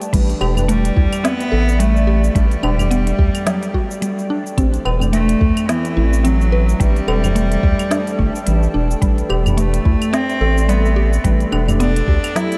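A warbling, nostalgic tape-like pad, a woody mallet-like synth pluck playing arpeggios and an overdriven organic electronic drum kit with a woody snare and crisp hats open this mystical, swung organic downtempo excerpt, with a soft overdriven electronic kick, a round analog bass up front and a dark, detuned chord stab in the background joining at once. A low-tuned, ringing tabla enters at 0.4 seconds and a clear, earthy cello with light vibrato and an airy bow takes the melody from 0.7 seconds. Sidechain pumping moves the pad, chord stab and bass, and the dreamy mix is soaked in huge ambient reverb over chords moving from C6 through Gmaj7 to Amadd9.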